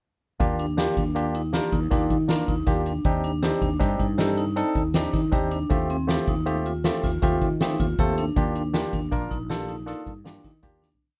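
Progressive instrumental band music in 7/4 at 158 BPM, driving and bright in Eb lydian, with a barky, lightly overdriven tine electric piano stabbing syncopated rootless chords up front over a round, punchy fretless bass locked to the kick drum. A soft-mallet drum kit with a fat snare and boomy kick drives the 7/4 groove, while a dry, close-miked vibraphone with medium hard mallets rings out a metallic arpeggiated ostinato, motor off. The rough home demo mix carries light reverb, moves from Ebmaj7 through Cmadd9/Eb and Fadd9/Eb back to Ebmaj7, and fades out from 8.4 seconds, with a drum fill at 10.8 seconds.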